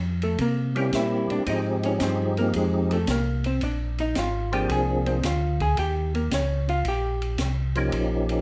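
Soulful and greasy, this swung soul jazz organ trio excerpt sets a round, dark tonewheel organ bass line turning through a slow rotary speaker against an open acoustic drum kit with dark cymbals, a high-tuned snare and a boomy kick. A clean, picked hollow-body electric guitar takes a solo from 0.2 seconds until it drops out at 7.4 seconds. From 0.8 seconds a fat, percussive second organ carries the melody up front, with third-harmonic percussion, key click, chorus vibrato and plate reverb.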